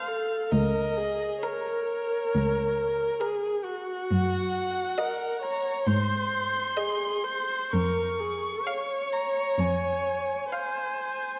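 The first violin carries the lyrical melody high in its range, its tone soft in attack and expressive, with vibrato and gliding portamento between notes. This is a slow, romantic movement for string quartet in Bb minor, turning to Db major from 4.1 seconds, moving at roughly 62-70 BPM in a flexible, rubato 4/4. A second violin, clear and focused, sings a second line beneath the melody, while the viola sits up front with its own expressive portamento in an accompanying role. The cello enters at 0.5 seconds to supply a smooth-topped, focused bass line and drops out at 10.3 seconds, just before the others finish. The whole is bathed in the wet reverb of a scoring stage, giving the production a dark, warm glow in this brief, lyrical passage cut from a longer piece.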